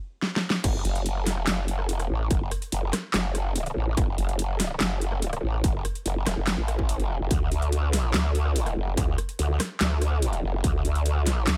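This excerpt of heavy wobble dubstep opens on a brief stop, with the dubstep drum kit playing a fill from 0.2 s before the drop hits at 0.6 s, where a distorted electronic kick drum and a growling, detuned bass with chorus and overdrive come in together. At 144 BPM in a half-time 4/4 feel in F# minor, tuned to A4 = 438 Hz, the chaotic, menacing drop sets the kit's huge snare, metallic hats, handclaps, rim clicks and crash cymbal against the kick, while the bright, saturated bass wobbles through a formant filter between E1 and D2. The layered, tape-tinged drums and the bass sit up front in a digital ambience, and the kick drops out at 10.7 s while the kit and bass carry on to the end.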